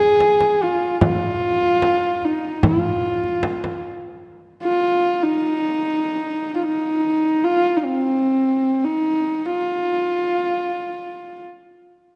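A horsehead fiddle and a frame drum open this short, solemn fragment of Mongolian folk music together, setting a vast mood at a straight 75 BPM in 4/4. The bowed fiddle carries the melody in F yu mode, tuned to A4 = 444 Hz, moving between C4 and Ab4. Its sound is husky and intimate, with a smooth top, soft attack, light vibrato and gliding portamento from a single player placed up front. The frame drum adds deep, dry strokes from soft hands before it falls away at 3.8 seconds. The fiddle then continues alone until 11.4 seconds, framed by a concert-hall reverb and a dark, warm production.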